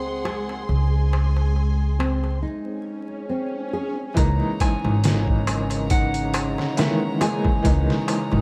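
Vinyl crackle and a small, lightly reverberant room frame this brooding, cinematic trip hop excerpt at 69 BPM in C# dorian with a gentle 16th-note swing, where a woody, growly pizzicato upright bass and a soft felt-muted upright piano with audible action noise and tremolo sit up front beneath a clean, dark electric guitar melody and full-bodied, thumb-plucked nylon-string guitar arpeggios, both carrying tape echo, while an intimate sul tasto chamber string section holds chords under a filter sweep, a reversed, granular backwards swelling texture glimmers in the background until 2.4 s, a crisp metal-shell darbuka adds percussion, an electronic swell fills the break, and a gritty, pitched-down sampler-style drum kit with a thumpy kick arrives at 4.2 s.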